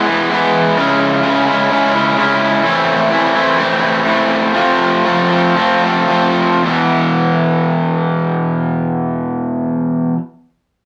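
A rough rehearsal-room recording with moderate reverb frames a restless, bittersweet rock fragment cut from a longer piece, carried entirely by a raw, bright electric garage guitar. The overdriven, picked, double-tracked guitar sits up front, moving from E through C#m, Am and F while the pace slows between 2.6 and 6.6 seconds. At 6.6 seconds a new passage opens on an E5 power chord, and the guitar plays on until 10.2 seconds.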